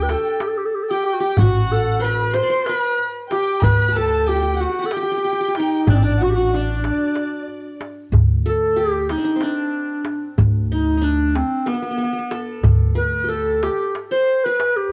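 Recorded at home on cassette in a moderately reverberant room, this festive Turkish makam ensemble piece in 7/8 sets a mellow, distant clarinet melody with plate reverb over a bright, plectrum-plucked qanun and a smooth, vibrato-rich bowed violin section, both carrying cassette-tape colour and plate reverb, with the violins dropping out at 7.8 s, while a woody pizzicato upright bass sits up front beside a crisp, dry metal-shell darbuka.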